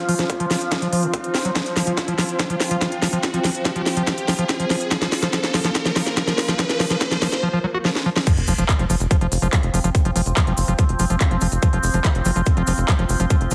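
At 143 BPM in a straight 4/4, this driving psychedelic trance excerpt builds for 8.3 seconds over an up-front, tight electronic kick, cracking overdriven snare, smooth hats, claps and crash, with a squelchy, gritty acid bass under a filter sweep, a resonant ring-modulated drone with moving overtones, a cloudy granular pad and a background riser, before the drop at 8.3 seconds brings an impact, a grainy cabasa and a punchy sawtooth sequencer bass, all under a heavily compressed, radio-like sound in which the drone, pad and acid bass pump.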